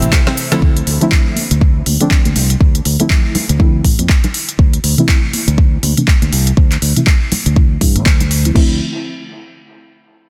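Warm and smooth, this deep house clip at 121 BPM in D minor swings over a deep, up-front electronic kick, a punchy fingered electric bass and a drum kit with woody snare, smooth hats, handclaps, shaker and crash, while soft-handed congas sit in the background, a dark, warbling chord stab with chorus, dub echo and sidechain pumping carries a filter sweep from 0.6 s, and a breathy pad and a round, mallet-like FM pluck appear only briefly near the start as the chords move from Dm9 to Am.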